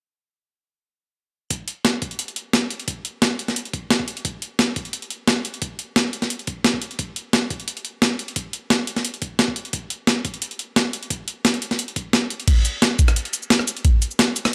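A gritty, tape-warm breakbeat drum kit features in this melancholic, soulful drum and bass excerpt at 175 BPM, its medium-tuned snare, crash cymbal, hi-hat, rim click and shaker sitting compressed and up front from 1.5 seconds, with the sound of being re-recorded in a small room. A thumpy, sampler-style electronic kick plays alongside it from 1.5 seconds, high-pass filtered along with its room sound, and drops out at 12.1 seconds just before the drop at 12.5 seconds. Light reverb surrounds the straight 4/4 groove, and the breakbeat kit carries on until 14.5 seconds.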